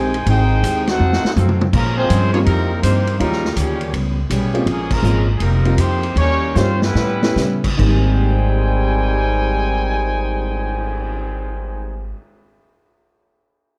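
Swinging 4/4 big band jazz at 139-163 BPM in Ab major, this energetic excerpt sets a soft-attack, lightly vibrato trumpet section on the melody over a dark trombone section's second line, while a thumpy, woody upright bass sits up front, a gritty, saturated vintage drum kit adds fills, a picked steel-string acoustic guitar and an upright piano entering at 2.3 s comp in the background, a bright trombone section's sustained chords barely register at the start, and the band slows from 4.7 s around a band accent at 4.8 s.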